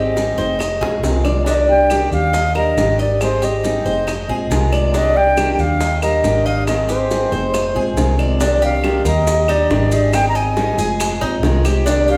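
A reedy, airy concert flute carries the melody from the first moment of this warm, danceable Cuban son and guajira fragment at 138 BPM, joined by a picked steel-string acoustic guitar, bright, metallic arpeggios on the double-strung tres, and a dark, round fretless electric bass sitting up front. Grainy maracas join tight, high-tuned bongos, which play a short fill at 0.8 s, and woody claves, the bongos and claves staying in the background as the harmony cycles through Abmaj7, Fm7, Cmadd9 and Ebmaj7, moving into a new section at 8.4 s. A wet recital-hall reverb gives the whole ensemble a spacious, church-like resonance.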